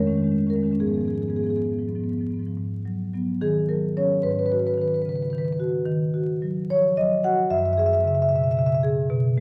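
A solo marimba played with soft mallets opens this short excerpt on a D#7sus4 chord, its rosewood bars sounding woody, round and mellow as they sit up front in the mix. This is a contemporary classical piece in G# dorian, moving in a rubato 6/8 at roughly 66-76 BPM counted in dotted quarters, and its mood is reflective and hypnotic. The marimba covers a range from F#2 to F#5, drifting through G#m6 and then, from 2.6 s, a circling pattern of G#m7 and D#m7 chords. The phrase settles on D#m before closing on an open F#sus2 at 7.5 s. A moderate recital hall reverb gives the instrument an airy halo, while a vinyl crackle runs beneath it, and the passage breaks off at 9.4 s as if cut from a longer performance.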